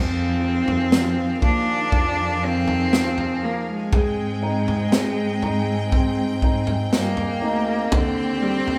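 Set in a moderate stone-room reverb with the band playing live together, this heartfelt, emotional pop ballad excerpt at 60 BPM in 4/4 moves through Fm7, Abmaj7 and Ebmaj7 as a clear, smooth solo cello sings the bowed vibrato melody over brilliant grand piano accompaniment, a rich, lush string section holding sustained chords, and a dark, woody cello section playing the bass sul tasto, while a natural acoustic drum kit with punchy kick, medium-tuned snare and toms comes in up front at 0.7 seconds.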